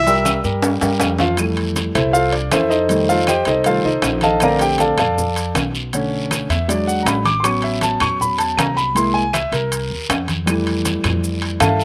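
Up front, a concert grand piano with deep bass and a slapback echo takes a solo from 1.4 s over chords such as Fmaj9, Bbmaj9 and C7b13 in this lively, danceable Afro-Cuban jazz passage at 158 BPM in F major, following an opening drum fill and carried by a dark, thumpy pizzicato upright bass on gut strings, ringing metal-shell timbales, low-tuned congas struck with hard hands, grainy maracas, a raspy saturated guiro and woody, band-limited claves with their own slapback echo, all captured dry outdoors.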